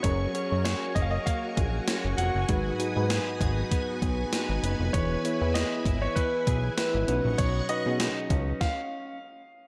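1980s-style pop with a nostalgic, uplifting mood and a lightly swung groove, cut from a longer piece and bathed in a dreamy plate reverb. A clear, polished grand piano carries the melody through diffuse ambient delay. Beneath it are a warbling FM electric piano, lush string-machine chords with ensemble chorus, a compressed clean guitar riff in the background, a fat, detuned sawtooth bass up front, and a thumpy gated drum machine with a gated-reverb snare. A stop arrives at 8.6 seconds, and the piano rings on until 9.5 seconds.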